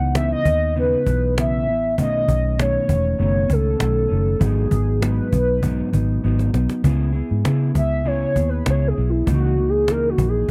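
Indie bedroom pop in a mellow, hazy mood, this short cut from a longer piece sets a hollow, clarinet-like synth lead with analog chorus and tape echo over a dark, clean, fingered electric guitar with subtle chorus and vibrato, a round, foam-muted fingered electric bass and a woody, soft-handed cajon with faint snares, all in a dry, close 1970s-style studio sound, with a drum fill at 6.2 s leading into a soft synth lead solo from 6.8 s.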